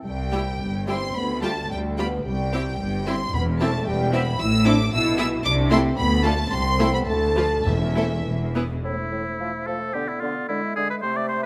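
In a quick 2/4 with a rubato feel, this urgent, dramatic classical-period excerpt for symphony orchestra sets a high, vibrato-rich violin melody over rich bowed violas, a distant, lush cello section and focused double basses, with a bright second violin line in the background and a dark, roomy French horn section holding sustained chords. Soft-mallet timpani, round and close, mark two brief moments, while the harmony turns from major to minor midway through. At 8.8 s the strings and horns give way to woodwinds: an up-front, close-miked oboe, a clear clarinet, an airy flute section and a warm bassoon, all set in the wet reverb of a recital hall.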